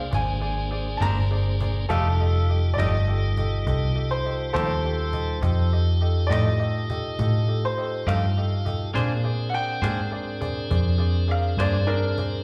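Set in a straight 12/8, this gritty, soulful slow-blues excerpt features a brilliant, long-sustaining upright piano soloing throughout, with a second, polished upright piano adding accompaniment, both carrying slapback echo, over piping tonewheel organ chords with key click and a slow rotary speaker, a dark, round, foam-muted electric bass punching up front, a faint, woody cajon in the background, and a twangy, clean electric guitar with harmonic tremolo and slapback entering at 1.0 seconds, the performance heard live through the venue's PA in a recital hall.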